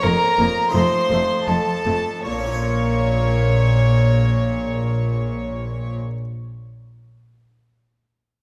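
Dramatic and stormy, this short excerpt from a baroque-style concerto movement in Bb minor moves in 4/4 at 75-88 BPM, slowing over its first 2.3 seconds as the harmony passes from Bbm/F to F7 before settling on Bbm. A rich, reedy solo violin carries the melody with light vibrato and gut-string tone, doubled higher by a close violin section, while a second violin section, violas and dark cellos sit in the background. A full, plucked harpsichord accompanies and a double bass section sits up front, all within a wet concert hall reverb.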